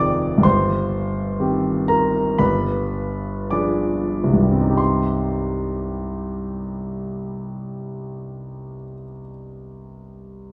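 Set in a wet recital hall with a 1.4-second reverb, this brief fragment of a longer work places a concert grand piano up front, its tone warm and open with a deep bass. The romantic character piece in C minor unfolds in a rubato 4/4 somewhere between 44 and 64 BPM, slowing through its first 4.8 seconds as the harmony moves from Cm/G to G7b9 before settling on Cm. The solo piano ranges from F1 to Eb6, giving a bittersweet, stormy mood.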